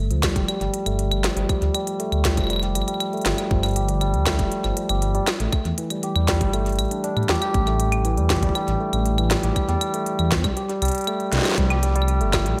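A straight 4/4 pulse at 119 BPM carries this melancholic, intricate IDM excerpt, with a tight, tape-tinged electronic kick under an industrial kit of clanging snare, crisp hats and claves, re-recorded in a large room and treated with digital delay. Up front, a barky tine electric piano played through a combo amp spins arpeggios through a low-pass filter sweep and digital delay, moving from Gsus2 to A7sus4 at 5.3 seconds and Csus4 at 10.3 seconds. Beneath it, a dark, detuned saw bass rumbles with a beating unison, all set in moderate plate reverb and bright 1980s-style digital production.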